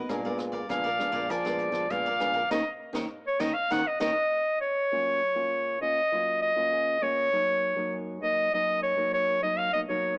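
Lively yet bittersweet, this samba and choro fragment puts an up-front, bright clarinet with a soft attack and vintage cassette-tape coloring over crisp picked cavaquinho, a fingerpicked classical nylon-string guitar with fresh strings, a thumb-plucked nylon-string bass guitar and a background jazz brush kit with a boomy kick and high-tuned snare, also cassette-tinged, whose fill from 3.7 s caps a band accent before cavaquinho, bass and drums drop out around 4.1 s, leaving clarinet and guitar to carry the second section through 10.2 s in a small-speaker, lightly reverberant home-cassette sound.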